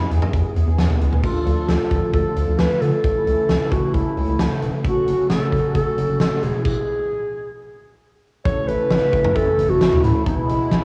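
A dark, jazz-style clarinet with vibrato opens this upbeat, nostalgic synth-pop fragment, carrying the melody up front with a cassette-tape tint, over round, brassy synth accompaniment with chorus set in the background and a huge arena drum kit with a fat snare and punchy kick, also tape-coloured. A rubbery, bouncy square-wave bass joins almost at once, and at 1.2 seconds a smooth, warbling vintage analog pad adds sustained chords with subtle chorus. The band breaks into a stop from 6.7 to 8.5 seconds before a new section begins, all in a small-room home cassette sound with moderate spring reverb.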